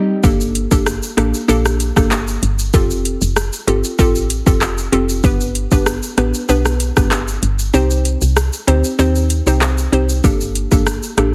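Sultry and bouncy, this dancehall excerpt sets a hollow, detuned square pluck with chorus against a round, woody FM bass and an up-front electronic afro-pop kit of deep kick, metallic hats, rim click, handclaps and shaker, while a bright tube shaker sits distant in the background, the pluck briefly alone at the start and the kick dropping out from 7.7 to 10.2 seconds over chords moving from Gmadd9 through Fadd9 and G to Cm, all under light reverb and a heavily compressed radio sound.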